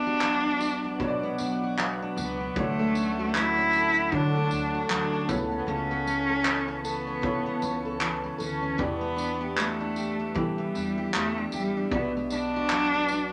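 Easy-going and sunny, this acoustic pop excerpt moves at a relaxed 77 BPM in 4/4 with a gentle sixteenth-note swing, settling in D major while the harmony drifts from Bm through Dmaj7, Aadd9/C# and Em7 before returning to Bm. Up front, a single bowed cello carries the melody with expressive vibrato and portamento, its tone warm. Beneath it, a full-bodied jumbo steel-string guitar is picked, while a mellow, slightly detuned upright piano with a boxy, short-sustained sound sits in the background. A woody, thumpy pizzicato upright bass on gut strings anchors the low end, and a glassy, ethereal FM pad with slow attack, long release, ensemble chorus and its own reverb hovers above in sustained chords. From 0.2 seconds a distant, roomy unplugged kit played with bundle sticks adds a punchy kick, handclaps and tambourine, all set in a moderate studio reverb.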